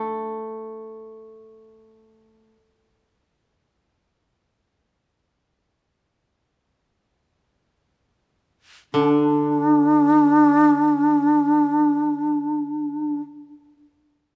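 A fingerpicked koto opens this austere, calm piece of Japanese chamber music, its woody, dry tone sitting between D3 and D4 as a quiet second line in free time. The koto drops away at 2.5 seconds, and the pace slows from 1.9 to 8.9 seconds. At 8.9 seconds a bamboo shakuhachi enters up front with the melody as the koto returns beneath it. The shakuhachi's breathy, bright sound has a crisp chiff on its attack, lifted highs, vibrato and an unsteady, human wavering as it holds on D4. Close, detailed microphones capture both instruments inside a reverberant recital hall, and the recording is a short section cut from a longer performance tuned to A4 = 441 Hz.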